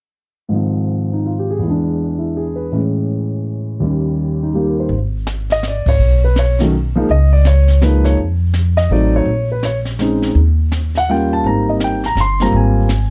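A concert grand piano opens alone at 0.5 s, carrying the melody up front with deep bass over Ab major changes before woody, thumpy gut-string pizzicato upright bass and a brushed drum kit with dark cymbals, a high-tuned snare and a boomy kick join at 4.9 s, with the trio hitting a band accent at 5.8 s in this playful, sophisticated jazz piano trio fragment, swinging in 3/4 at 165 BPM with a dry, dark, warm production.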